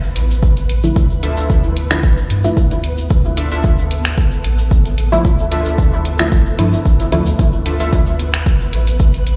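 Heard through a big sound system in a bare room and bathed in large studio reverb, this brief cut from a longer dub techno piece has a hypnotic, meditative pull. A deep, tape-warm electronic kick sits up front, joined by a layered deep house kit of finger snaps and hi-hat re-recorded in a small room, while a bright, vintage cabasa adds a faint acoustic rasp from the very start. Beneath them a round, soft sub bass pumps against the kick, and a flickering granular texture with its own reverb hovers quietly in the background. From 0.8 seconds a muted, detuned chord stab, filtered and evolving, drifts through chorus, phaser and dub echo. At 1.2 seconds warbly lo-fi synth keys bring a nostalgic, ring-modulated riff, washed in chorus and echo, that lingers until 8.0 seconds over a single minor chord.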